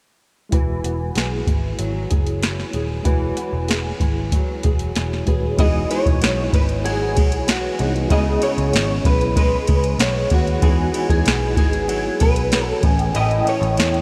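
Sunny and dreamy, this indie pop and bedroom pop piece moves at an unhurried 95 BPM in a straight 4/4, centred on E major and cut from a longer piece. A soft vintage rhythm box sits up front with a deep analog kick, crisp snare, metallic hi-hats and ride cymbal, while a dark, round, foam-muted electric bass is picked underneath. A fingerpicked flamenco guitar with ensemble chorus and vibrato adds acoustic accompaniment, and a reedy electric piano with fast tremolo and a cassette-tape character stays clean and in the background. At 5.6 seconds an electric guitar through a small old amp enters with the melody, its slightly broken-up, compressed tone smeared by chorus and a diffuse ambient delay. The whole mix is soaked in a huge ambient reverb, drifting from Eadd9 into Emaj9, C#m7, back to Emaj9 and finally Amaj7.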